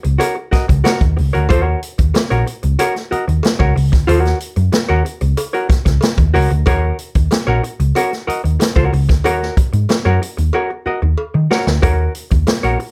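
A straight 4/4 groove at 93 BPM drives this sly, funky cut from a longer piece in Eb minor, where a swinging big-band drum kit with a punchy kick and medium-tuned snare sits up front beside a round, amped hollow-body short-scale picked electric bass and a clean, dark archtop guitar, miked and amplified, playing accompaniment over an Ebm7 chord, while a metallic cowbell sounds close and dry in the background, all under light reverb until a drum fill from 10.5 to 11.8 seconds turns the phrase back around.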